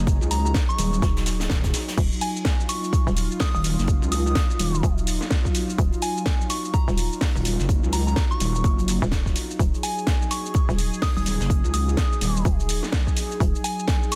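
A gritty, bouncy bass house excerpt at 126 BPM in Eb minor opens on a bright, evolving sawtooth pad holding an Ebmadd9 chord alongside a heavy, saturated wobble bass with chorus and sidechain pumping, then a punchy up-front kick, a tape-warm garage kit with cracking snare, crash, hi-hat and shaker, and a very quiet brushed acoustic kit arrive at 0.1 seconds, a soft, pure FM bell melody with dub echo enters at 0.3 seconds, and a hollow, knocking FM bass joins at 1.0 seconds, all within a dense, heavily limited modern master.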